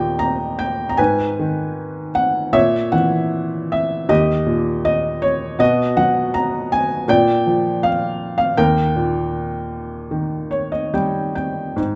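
Rubato phrasing in 4/4 drifts between 71 and 82 BPM in this wistful, reflective passage of lyrical classical solo piano, cut from a longer piece and tuned to A4 = 439 Hz. A felt-muted upright piano sits up front, its intimate, boxy tone carrying audible action noise and short sustain as it spans D#2 to A#5 through chords moving from D# and G#m to A#dim, B5 and A# before settling back on D# at 8.6 seconds. A brief felt piano fill arrives at 10.1 seconds, all set in a moderate recital hall reverb with a soft top end.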